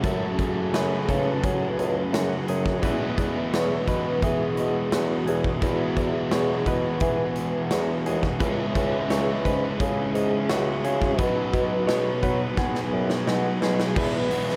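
At 86 BPM in a straight 4/4, a big, punchy rock kit with bright cymbals drives this wistful, dreamy shoegaze and dream pop excerpt in E major, moving from F#madd9 through E, C#m and Badd9 and ending with a drum fill from 12.6 to 14.0 seconds. A thick fuzz guitar with ensemble chorus and an overdriven guitar with reverse reverb carry the riff, while a twangy, direct-recorded clean guitar plays chorused, delayed arpeggios in the background. A mellow bassoon holds the bass line until 14.2 seconds, and a hollow, woody clarinet-like synth lead with vibrato sings the melody, all soaked in a huge ambient reverb with a 7.9-second tail.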